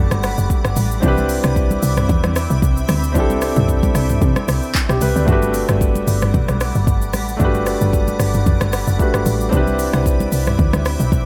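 A woody, punchy log drum bass anchors this relaxed amapiano excerpt, its fast-attack FM tone carrying a noise layer and decaying into a mellow tail. A deep house drum kit sits up front beside it, layered and electronic, with a deep kick, smooth hi-hats, handclaps, rim clicks, shaker and toms entering at 0.1 seconds and riding a 113 BPM groove in 4/4 with a light 16th-note swing. A concert grand piano plays intimate accompaniment in G major, present and polished, its long sustain and audible action noise adding a close, human texture. Behind it, a bright granular cloud pad holds blurred, detuned chords that slowly evolve, washed in its own reverb and pumping against a sidechain, while damped, thick-skinned congas stay dry in the background until 10.8 seconds. The harmony drifts between Gmaj7 and Cmaj9, and the overall sound is dry and easygoing, with a soft, warm glow.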